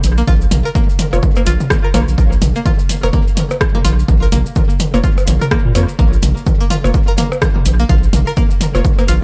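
A swung 4/4 groove drives this hypnotic, quirky minimal techno excerpt, built on an up-front punchy kick and a deep, saturated sine sub bass with sidechain pumping, joined by analog drum-machine hi-hat and rim click with delay, tape-echoed electronic toms and blips, quiet grainy maracas, a twangy, string-like resonator pluck run through chorus and phaser from 0.2 seconds, and a crisp, detuned wavetable chord stab in the background from 1.1 seconds, the whole mix set in echo-heavy digital ambience.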